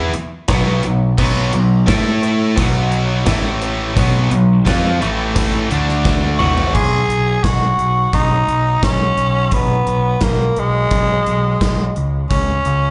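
Driving and confident, this classic rock cut from a longer piece moves at 86 BPM in a straight 4/4, with two bright, overdriven electric guitars playing power-chord riffs over a growling, up-front picked bass, a gated 80s drum kit with punchy kick and bright cymbals, and a very quiet metallic cowbell. A drum fill at 6.1 seconds hands off to a raspy, gritty tenor saxophone solo with vibrato and slapback and tape echo, which takes the lead over bass and drums once the guitars stop at 6.7 seconds. The whole thing sounds like a live club gig heard through the venue's PA, with small-room reverb and a dull, capped top end.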